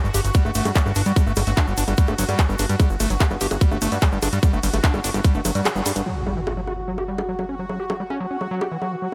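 A bubbling, resonant filter texture holds sustained chords as a squelchy, gritty acid bass riff with tape echo pumps against an overdriven, tight kick and a fat, detuned analog bass, while bright hats, bongos, handclaps, ride and a grainy egg shaker fill out this intense, alien psychedelic trance drop at 147 BPM. The chords move from G5 to F#5, and the kick drops out at 5.7 seconds on a band accent. An electronic impact lands at 6.1 seconds as the section changes, with only the texture, acid riff and drum kit carrying on beneath it in light reverb.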